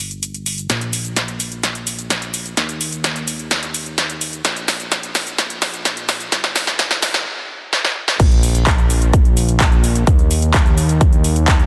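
A fat, detuned sawtooth bass with tube saturation and sidechain pumping opens this anthemic, euphoric festival progressive house excerpt at 128 BPM, as a big-room dance kit of punchy snare, metallic hi-hats, handclaps, shaker and crash cymbal drives a build-up of drum fills into a stop at 7.3 s, before an up-front, punchy electronic kick lands with the drop at 8.2 s, all set in light digital reverb under a dense, heavily limited modern master.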